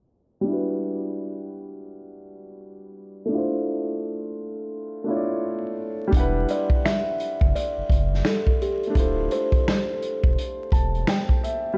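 Vinyl crackle and a muffled, lightly reverberant haze frame this reflective, melancholic lo-fi hip hop excerpt at 85 BPM with a swung feel, where a woody upright piano with audible action noise and cassette-tape grit plays Em9 and Dm9 chords alone under a filter sweep until 6.1 seconds, when a punchy, roomy vintage drum kit with finger snaps and a deep, round sub bass enter, joined at 6.5 seconds by a soft, buzzing kalimba melody, before the piano closes with a fill from 10.4 seconds.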